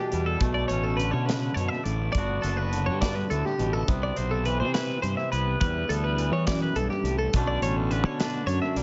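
Bright, compressed twelve-string electric guitar arpeggios sit up front in this wistful, playful math rock and midwest emo fragment at 69 BPM in 6/8, alongside a twangy, clean fingered electric guitar accompaniment through analog delay, a dark, round fuzz-overdriven fingered bass, and a polished, airy studio drum kit of punchy kick, medium-tuned snare and hi-hat with its own analog delay, as the harmony moves through Bm9, Gmaj9, Cmaj9 and Em9 in an echo-heavy, lightly reverberant mix with a muted top end.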